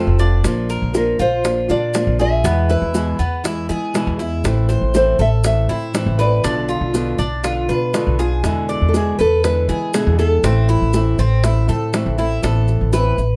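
A straight, danceable 4/4 groove in the Cuban son and guajira style drives this warm excerpt. A woody, growly pizzicato upright bass sits up front, while round, low-tuned bongos and grainy, saturated maracas stay in the background from 0.2 seconds. A fingerpicked classical nylon-string guitar plays the accompaniment and a bright, metallic Cuban tres with double strings picks arpeggios, as a second, smaller nylon-string guitar carries the melody from 1.0 to 11.9 seconds through chords moving from Bb and E to Am, Bdim and E7 before landing on Amadd9 under light reverb.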